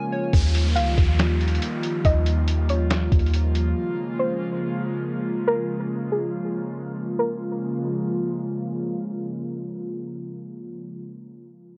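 An airy, breathy pad opens this hazy, spacious cloud-rap excerpt, its sustained chords pumping under sidechain with chorus and a low-pass filter. At 0.3 seconds, a half-time groove arrives over a filter sweep: a deep, boomy 808-style bass, a muffled, pitched-down sampler drum kit with a thumpy kick, and a faint electronic downlifter, all three dropping out early, while a soft, round, dark pluck carries the melody from 0.8 seconds through chorus, filtering and delay. The mix sounds dry and worn, like warbling old cassette tape with drifting pitch and a dulled top end.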